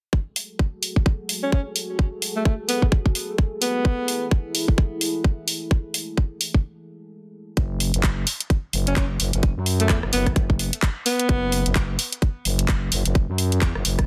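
A growling, thick FM bass with tube saturation and sidechain pumping takes over at 7.6 s in this aggressive, bouncy bass house excerpt at 129 BPM in F# minor, while a jazz-style alto saxophone with vibrato and tape echo sings at 1.4 s and again at 8.9 s; a moody, detuned analog pad with chorus holds an F#madd9 chord through the opening, and a tight, up-front electronic kick and a garage kit of handclaps, hi-hat and rim click drive the 16th-note swing in a dry, dense, heavily limited master.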